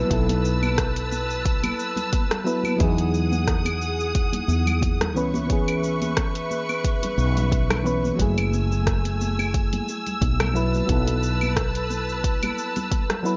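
Softened by light reverb and rolled-off highs, this smooth, relaxed sunset chillout excerpt drifts over a gentle swing, with a very quiet electronic downlifter sinking away in the first 2.8 seconds. A mellow FM electric piano with chorus and digital delay shades the chords from B7sus4 through Emaj9, C#m7 and F#m9, while a lush bowed string section holds sustained harmonies and a round, woody fretless bass sits up front until 12.5 seconds. An overdriven deep house kit of cabasa, claves, hi-hat and rim click rides with a deep electronic kick, and high-tuned congas played with soft hands sit close and dry in the background.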